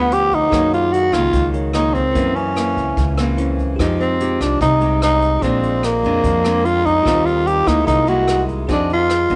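A growling tenor saxophone carries the melody up front in this breezy, romantic bossa nova fragment, its dark, raspy subtone full of vibrato, breath and scooped notes, trailed by a tape echo. Set at 147 BPM in a straight 4/4, the short passage moves through rich jazz harmony, from G7#11 and Gb6 through Fm9 and Bb9 to Eb69 before turning on C7alt and Fm7. A fingerpicked nylon-string guitar adds a small, warm accompaniment, while a bright, bell-like tine electric piano sits cleanly in the background. A woody pizzicato upright bass anchors the low end, and a vintage brush drum kit enters at 0.1 s with hi-hat, rim click and a punchy kick, sounding distant and roomy with a rolled-off top. A moderate echo chamber reverb gives the whole ensemble a soft studio glow.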